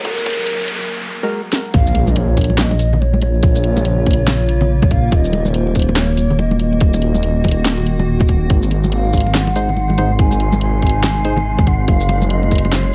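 A dark, detuned saw bass rumbles up front from 1.7 seconds, anchoring this meditative, heavy deep dubstep excerpt in Bb minor at 142 BPM with a swung, half-time feel, as a breathy, hollow ney with vibrato and dub echo carries the melody over a cloudy, evolving granular pad. A riser and impact frame the opening, and the drop arrives at 1.7 seconds. Throughout, an overdriven, tight electronic kick and a garage kit with a cracking snare, handclaps, hi-hat and shaker drive the track, and thin-skinned congas join in the background at 1.9 seconds. Mellow, wave-folded organ stabs with chorus, phaser and 12-bit sampler grit flicker in at 1.2 seconds and return around 9.6 seconds, and an airy, wind-like tuned noise texture drifts in at 8.9 seconds.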